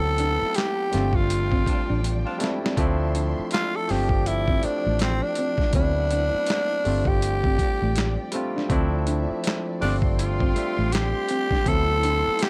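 Smooth and late-night, this 81 BPM neo-soul R&B excerpt with a 16th-note swing sets a growling, raspy tenor saxophone melody up front over a barky tine electric piano, a round, foam-muted fingered bass, a dusty, compressed sampler-style kit of thumpy kick, snare, hi-hat and handclaps, a mellow electric guitar second line in the background, and lush bowed strings with portamento sustaining chords behind, while a very quiet horn section adds brief stabs from 1.7 to 2.5 seconds during an opening band accent and drum fill, all moving between D13 and G7sus4 in light reverb.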